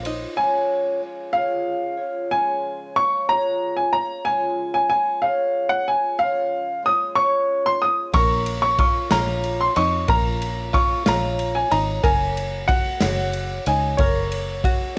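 In 6/8, this nostalgic indie folk excerpt sets a woody, vintage upright piano melody up front over a dark, boxy, octave-doubled twelve-string guitar, while a plunky fingerpicked banjo, a round, foam-muted electric bass and an airy country kit with punchy kick, snare and ride sound only briefly at the start before returning at 8.1 seconds as the arrangement builds, with cassette tape coloring the guitar, banjo, drums and piano inside a small-room home recording.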